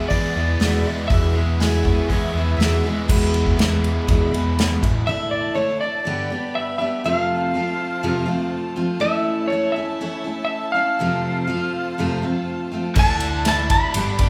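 Warm and jangly, this cut from a longer folk rock and heartland rock piece moves at 122 BPM in a straight 4/4, opening on an E chord. A dark, slightly broken-up electric slide guitar, played with fingerpicks, carries the melody over a bright, full-bodied jumbo acoustic guitar strung with fresh strings, which sits up front. A double-tracked, overdriven electric guitar riff, a round, amped fingered bass and a punchy, up-front acoustic kit played with bundle sticks drive the opening, while a mandolin with doubled strings adds a brief second line in the background from 1.8 s. The riff guitar, bass and drums drop away around 5.1 s as the harmony moves through Dsus2, G, F and A/E, leaving the slide and acoustic guitars over a smooth, bowed string section with vibrato holding sustained chords in the background. The rhythm section and riff guitar return at 13.0 s on Dsus2. A wet recital-hall reverb gives the whole recording the airy bloom of a church or concert hall.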